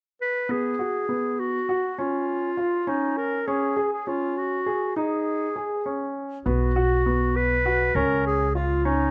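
Closely miked and nearly dry, this hypnotic, urgent excerpt of contemporary chamber music in 5/8 puts a smooth, classical-style solo clarinet melody up front over open, long-sustaining baby grand piano arpeggios, with a woody pizzicato upright bass on steel strings joining at 6.5 seconds.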